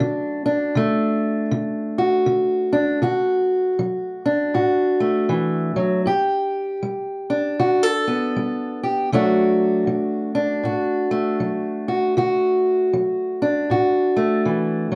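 Laid-back and soulful, this short blues excerpt in a gentle swing features a lone fingerpicked steel-string acoustic guitar with a dark, boxy parlour tone, sitting up front in a small, reverberant room as it moves from D to G and back to D.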